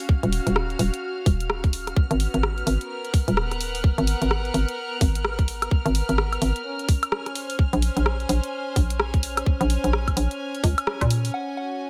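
A hollow, knocking FM bass sits up front in this bouncy, soulful two-step UK garage excerpt at 128 BPM in Eb minor, riding a swung groove from a tight, layered electronic kick and a dry, punchy analog drum machine whose hi-hat, rim click, woodblock and crash are low-pass filtered. Behind them, a silky vintage string machine with phaser and ensemble chorus holds sustained chords that move from Ebm9 to Abm9 to Bbm9, while an earthy chamber string section with light vibrato adds texture, both carrying sidechain pumping. A band accent lands at 10.9 seconds, and a pure, gentle synth bell with chorus and phaser chimes a single note at 11.3 seconds over a rootless Ebm9, all set in a digital ambience.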